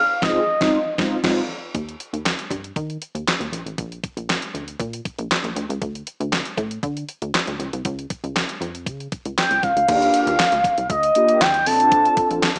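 Heard through a small-speaker sound with light reverb, this danceable, feel-good excerpt of early-eighties boogie funk moves at 118 BPM in Eb lydian and opens on a band accent over a Dbmaj9 chord. An up-front, thumpy detuned 8-bit drum machine with gated reverb and a punchy, sawtooth-edged plucky analog bass carry the groove throughout. A smooth, warbling portamento lead with chorus and vibrato and round, dark synth brass play only briefly at the start, then return at 9.4 and 9.9 seconds, carrying on through the Ebmaj9 and Bbmaj9 chords.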